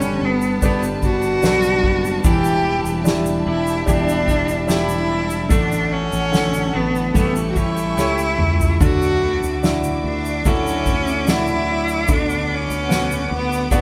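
A clear, focused solo cello carries the melody up front, bowed with vibrato in a close, intimate tone, in this tender, emotional pop ballad excerpt in D major at a slow 74 BPM in a straight 4/4. Beneath it, a concert grand piano with a smooth, vintage character and deep bass supplies the accompaniment, while a growly fretless electric bass sustains the low end. A lush studio string section holds sustained chords in the background, joined by picked arpeggios from a bright, twangy twelve-string electric guitar and a grainy egg shaker. A drum kit played with soft mallets enters at 0.2 seconds, with a boomy kick, medium-tuned snare, ride cymbal and toms, and it plays a fill from 8.0 to 8.8 seconds. The harmony moves from G through Em7, D/A and A7 to Dadd9 and Bm/D, and the band sounds as if playing live together in a moderate stone room.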